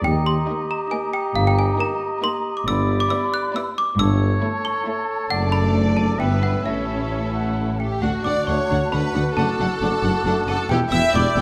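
In a 3/4 at 136 BPM with a straight feel, this cinematic cue in D major has a mischievous, magical character. A woody, dry trough xylophone struck with plastic mallets carries the melody from the first moment, joined at 0.5 s by a distant violin section also carrying the melody in the background. Around it, a clear oboe, a clear clarinet, an airy large flute ensemble and a close, bowed violin section spin second lines, while violas fill in smooth accompaniment. The low end is anchored by a focused, lush cello section, a bowed double bass section and a soft-attacked tuba in the background. At 8.0 s the harmony settles onto D, and a very quiet French horn section adds sustained chords from 8.5 s. A wet scoring stage reverb lends the whole ensemble a roomy, orchestral sheen in this short excerpt cut from a longer piece.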